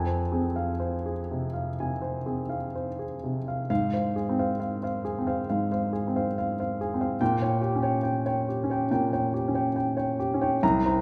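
A freely flowing rubato in 4/4 at around 61-72 BPM carries this brooding, bittersweet romantic character piece in F minor, cut from a longer work, where an intimate, up-front grand piano, tuned to A4 = 437 Hz, with its action noise clearly audible, ranges from C2 to Bb5 over harmonies that move from Fm to Fm/Ab at 3.7 seconds and Gdim/Bb at 7.2 seconds, all bathed in the lush reverb of a church or concert hall.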